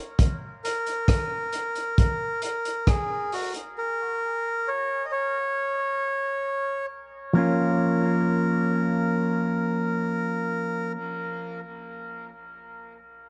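A dark, echo-soaked mix with light small-room ambience and a rolled-off top end opens this spacious, deep dub reggae excerpt, cut from a longer piece, in Bb minor at a slow 67 BPM in straight 4/4. A crunchy breakbeat drum kit sits up front with a punchy kick, gritty saturation, hi-hat and rim clicks, but it plays only until 3.8 seconds, during an opening break where chords are absent. A reedy, breathy melodica carries the melody from 0.6 seconds, its nasal plastic-case tone smooth and close, trailing dub echo as it moves between Gb4 and Eb5. At 7.3 seconds the harmony settles on Bb minor as a clean, fingered electric guitar arrives through an envelope filter, compressed and up front, with spring reverb, a high-pass filter and its own dub echo. The guitar supplies the accompaniment while the melodica carries on until 10.9 seconds.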